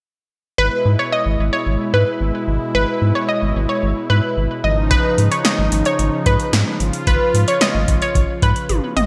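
A rubbery, nasal square bass drives this cool synth-pop excerpt at 111 BPM, while a round, warbling analog pluck carries a second line through chorus and delay above a brassy, detuned analog pad holding sustained chords that move from E/G# to C#add9/G#, until an overdriven electro drum machine with deep kick, punchy snare, metallic hats and toms enters at 4.9 s under gated reverb and plays a drum fill at 8.7 s, the whole mix sitting in a lush hall with bright 1980s-style digital production.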